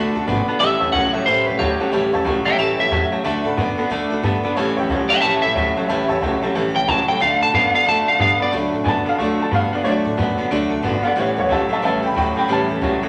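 This rowdy, retro rock clip opens with a boxy upright piano fill at 0.1 seconds over a steady bed of bright, picked dreadnought acoustic guitar, a clean, twangy electric guitar riff in its low register, and a woody, thumpy pizzicato upright bass on gut strings. At a brisk 182 BPM in 4/4 with a swung eighth-note feel, the band moves between D and A7 in D major. At 0.6 seconds a scooped, slightly broken-up electric guitar takes the melody, sitting up front with vibrato and a bright, upper-register twang. That lead drops out at 8.5 seconds, when the warm upright piano steps forward for a solo through the second section while the acoustic guitar, riffing electric guitar and dark bass keep the groove rolling. A wet large-studio reverb gives the whole band a roomy, lively glow, and the piece is cut from a longer performance.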